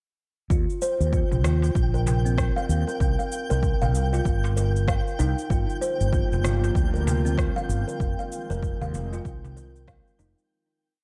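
A short, meditative organic downtempo piece in F dorian at 96 BPM opens at 0.5 seconds with a woody, ringing kalimba looping a filtered, delayed arpeggio, a round, punchy fretless bass riff with sidechain pumping, and an overdriven electronic kick and cabasa-and-rim-click beat swung on the sixteenths, soon joined by a twinkling granular high note and a crisp, saturated darbuka at 1.3 seconds sitting in the background. An airy, breathy pad with chorus and sidechain pumping enters at 5.7 seconds to hold sustained chords as the harmony moves from Eb through C7(no3) and Gm7 to Fm7. The dark, warm production, dressed in light reverb, fades out over the closing seconds.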